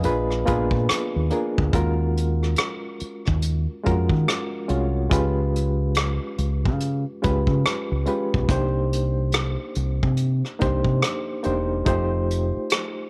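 R&B and neo-soul in a smooth, warm mood, this short excerpt from a longer piece rides a relaxed, swung sixteenth-note feel through lush chords such as Bb7b9, Ebm11, Db7#11, Cm9 and F9. A reedy, barky electric piano with a fast tremolo sits up front as accompaniment, heard through its built-in speakers, over a dark, round fingered electric bass with a deep dub character. A vintage brush kit with a punchy kick, hi-hat and rim click adds a natural acoustic touch with a rolled-off top, all set in light reverb and small room ambience.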